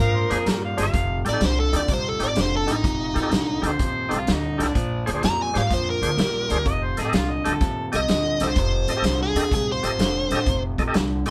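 A rollicking, soulful electric blues shuffle at 126 BPM in F mixolydian opens with a dark, smooth, overdriven lead guitar up front carrying the melody, a mellow harmonica with light vibrato and scooped notes playing a second line until 7.9 seconds, a slightly broken-up, lo-fi electric guitar riff and a woody pizzicato upright bass, joined at 0.3 seconds by a thick tonewheel organ turning through a slow rotary speaker and a vintage drum kit with a punchy kick in a small, pumping room, the band moving between Bb9 and F9 chords as it plays live together with a touch of reverb before the lead guitar drops out at 10.6 seconds in this brief cut from a longer piece.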